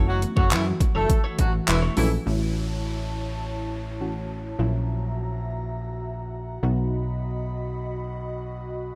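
A straight 4/4 dance-pop groove at 103 BPM opens on a drop, with an overdriven pop drum kit of knocking kick, hi-hat and handclaps up front, a punchy, funky analog bass pumping beneath it, and a tight horn section carrying the melody with vibrato and tape echo while a chorused twelve-string electric guitar riff sits in the background. Throughout the fragment, the glassy wavetable pluck and an airy, breathy pad, both chorused and pumping, carry the chords through F#m7, A, F#7/A# and B in A lydian. The drums and horns drop out by 2.1 seconds, and from 2.3 seconds an electronic downlifter descends quietly. The summery, carefree fragment has a dry, rough home-demo sound.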